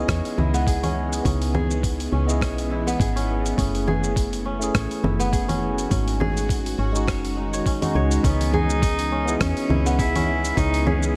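A light reverb gives this short excerpt of organic downtempo an airy, mystical glow, set at an unhurried 103 BPM in 4/4 with a gentle sixteenth-note swing in C# minor. A woody, round FM bass sits lowest and loudest alongside a thumpy electronic kick that is gritty and sampler-style, while a dusty soul kit of congas, hi-hat, rim click and shaker, re-recorded in a large room, fills out the groove. Over this, a crisp, ringing kora plays fingerpicked arpeggios through digital delay, and a bright tine electric piano, heard as if through its built-in speakers, adds accompaniment that pumps against the kick and echoes with its own delay. Far behind them, a tense, detuned sawtooth drone holds sustained string-like chords, colored by phaser, vibrato and its own reverb. The harmony moves from C#m7 through F#m9 and G#7sus4, and when it returns to C#m7 at 8.2 seconds a single cello enters, bowed sul tasto with a pure, floating tone and a soft attack, carrying the melody through delay to the end.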